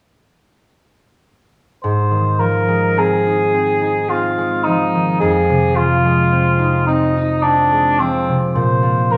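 At 1.8 s a ringing, fingerpicked concert harp and a mellow cor anglais with light vibrato begin together in this pastoral, dreamy impressionist classical fragment in Ab major, the cor anglais singing a distant, roomy solo melody in classical style over the harp's up-front acoustic accompaniment at a rubato 54 BPM in 3/4, moving through Ab6, Fm7 and Bb9sus4 inside a wet stone room before the fragment breaks off at 9.2 s.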